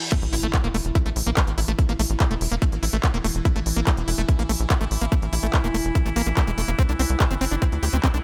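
Hypnotic and intense, this psychedelic trance drop, cut from a longer piece, opens with a very quiet reverse cymbal and impact as an up-front, tape-warm kick from a large room and a small-room techno kit of crash, handclaps and smooth hats drive under a punchy, nasal sequencer bass, a squelchy, resonant acid riff with chorus and digital delay, and an evolving sine pad with phaser and reverb, both pumping against the kick.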